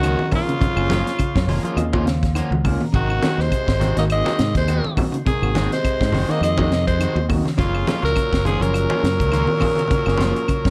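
A tight funk drum kit with a high-tuned snare and tight kick sets a swung sixteenth-note afrobeat groove in 4/4 alongside woody claves and bright, thin-skinned congas sitting in the background. A round, punchy fingered electric bass sits up front, while a clean electric guitar plays arpeggios and a twangy guitar at the edge of break-up adds stabs colored by spring and plate reverb. The mood is joyful and funky, with the harmony moving from Gbmaj7 to Ab7 at 2.9 seconds and back to Gbmaj7 at 7.6 seconds. A raspy, forceful alto saxophone carries the melody with light vibrato, plate reverb and analog delay, supported by a gritty tenor saxophone and a very quiet, mellow bass trombone on second lines. A barky, overdriven tine electric piano with medium tremolo comps through a combo amp and plays a fill from 1.2 to 2.9 seconds in this short cut from a longer piece.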